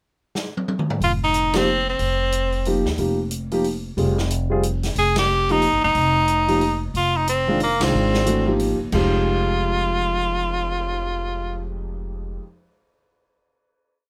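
A light reverb gives this short, complete modal jazz piece a natural small-room sound, with the tenor saxophone up front and bathed in plate reverb. At a brisk 182 BPM in 3/4 with a gentle swing, the music sits on an Fm9 chord in F dorian and feels intense and spiritual. The acoustic drum kit opens with a fill at 0.4 seconds during the pickup bar, then keeps time on the hi-hat with sticks under dark cymbals, a medium-tuned snare and a boomy kick. Upright bass joins at the downbeat, thumpy and close in a pizzicato two-feel, and the piano follows at 1.5 seconds with syncopated comping in quartal voicings, its tone warm and woody with a long sustain. The edgy tenor saxophone plays forceful, motif-based call phrases with vibrato and scooped notes, and the band hits accents together before everyone settles onto a final chord at 8.9 seconds.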